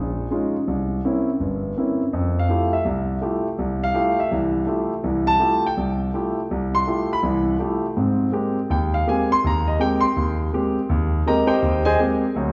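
Jazz for solo concert grand piano, cut from a longer piece, swinging in 4/4 at 164 BPM with a hypnotic, searching mood, the up-front instrument sounding warm and open with deep bass and long sustain across a range from G1 to C6, set in a wet recital-hall reverb as its harmony moves from Eb9sus4 and C7b9 into Fmaj9 at 2.1 seconds and Abmaj9 at 8.0 seconds.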